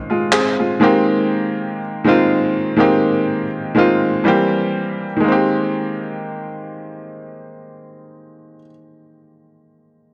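A clear, up-front baby grand piano with short sustain carries this tender, dreamy contemporary R&B fragment at a slow 61 BPM in Ab major, moving from Dbmaj7 through Abmaj7 and C7 over a gently swung 16th-note feel, while a brief burst of overdriven, gated-reverb electronic handclaps appears only from 0.3 to 0.6 seconds, all wrapped in light reverb and the worn, warbling pitch drift of old cassette tape.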